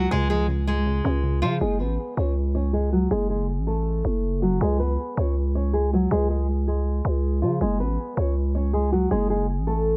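Hip hop in a trap vein, this brooding, dark fragment of a longer piece moves at 160 BPM in 4/4 with a half-time feel, set in F# harmonic minor. A fingerpicked nylon-string guitar carries the melody up front throughout, its classical, full-bodied tone marked by audible finger squeak and shaded by a low-pass filter and digital delay. For the first 1.6 seconds, a warbly, dusty, lo-fi pluck with detuned layers, a sub octave and a chorused shimmer sits in the background as accompaniment before dropping out. Beneath it all, a growling, buzzy 808-style bass with a fast attack and decaying tail stays prominent from start to finish. A filter sweep runs from 1.6 seconds to the end as the harmony moves from C# to F#madd9, C#5 and back to F#madd9, all within a small room ambience.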